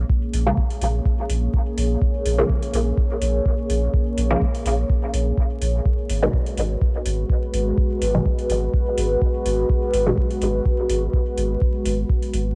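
Dub techno at 125 BPM in Bb phrygian, this hazy, cavernous piece is cut from a longer track and moves with a light swing on the sixteenths, shifting from Bbm7 to Abm7 at 5.9 seconds. A deep, moody ambient pad holds sustained chords with a slow attack and long release, its detuned sawtooth unison and sub octave thickened by chorus and built-in reverb and pumped by the sidechain. A filtered dub chord stab sits up front, muted yet bright, with detuned, wave-folded tones and a fast pluck, coloured by phaser and dub echo while a filter sweep runs across it for the whole 12.6 seconds. Underneath, a clean, smooth sine sub bass pumps in the low register, and an analog kick enters at 0.1 seconds with metallic hats from 0.3 seconds, both re-recorded in a small room. The drums, pad and stab carry cassette tape colour, and the home cassette recording adds vinyl crackle to a dry, close sound.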